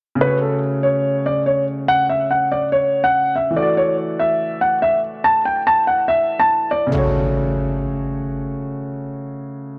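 Ominous and dark, this half-time hip hop fragment at 143 BPM in F# minor places a mellow concert grand melody up front over a boxy, long-sustaining piano accompaniment with deep bass, both low-pass filtered, moving from F#m to Dadd9 and back until an electronic impact lands at 6.9 s as the melody stops and the accompaniment carries on to 9.8 s, the whole captured in a dry, gritty recording with light reverb and small room ambience.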